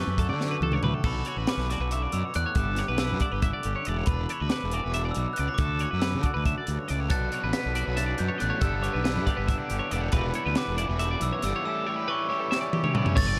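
Playful and wistful, this math rock and midwest emo excerpt in 7/8 sets a mellow, bell-like glockenspiel melody with slapback echo over bright twelve-string arpeggios, a twangy phased guitar in the background, an up-front fuzz bass, and a crisp fusion drum kit with a high-tuned snare and dark cymbals. It moves through chords such as Dmaj7, Bm9 and A7, with a double-tracked overdriven guitar riff joining at 7.1 seconds, all within a dark, lightly reverberant production.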